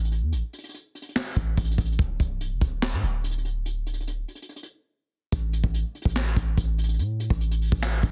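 Melancholic and brooding, this short fragment of half-time trap-flavoured hip hop in A minor at 144 BPM pairs a deep, sine-like 808-style bass with a fast attack and decaying tail against an up-front acoustic jazz brush kit of handclaps, hi-hat, boomy kick and a high-tuned snare, all dry and densely limited, with a brief break from 4.5 to 5.3 seconds before the next section begins.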